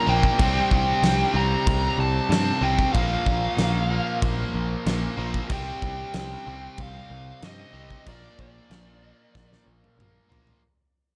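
A dark, smooth lead guitar sits up front with an overdriven tone and tape echo, carrying a menacing melody over a driving hard rock groove in this excerpt from a longer piece. Beneath it, a bright, crunchy overdriven guitar and a scooped, compressed distorted guitar play the riff through C5, Bb5, Cm and Bb, anchored by a punchy picked electric bass and a big-room acoustic drum kit with a fat snare and rolled-off top. The whole passage fades out in light reverb, and a drum fill enters at 9.3 seconds.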